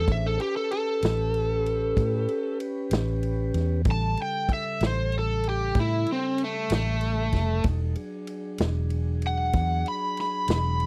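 Set in a straight 12/8, this soulful, swaggering slow blues fragment features an overdriven slide guitar played with fingerpicks, bright and up front with slapback echo, soloing over a dark, round, foam-muted fingered electric bass, a natural acoustic drum kit with punchy kick, medium-tuned snare and ride cymbal, and a soft, flute-like tonewheel organ holding chords with key click through a slow rotary speaker, in a dry, close 1970s-style studio recording as the harmony moves from A9 to E9 at 7.6 seconds.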